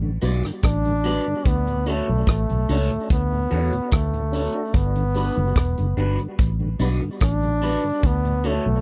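A tonewheel organ, sitting in the background with key click, chorus vibrato, slow rotary speaker and tape echo, opens this laid-back roots reggae excerpt at 73 BPM in D major, alongside a dark, round, foam-muted electric bass played up front. A slightly broken-up, picked electric guitar with phaser and tape echo joins at 0.2 seconds with a vintage drum kit of punchy kick, hi-hat and rim click under a rolled-off top, and a clear trombone with light vibrato, a smooth top and tape echo takes the up-front solo melody from 0.6 seconds. The harmony moves between Gmaj7 and Dmaj7, and the sound is dry and close, like a 1970s studio recording.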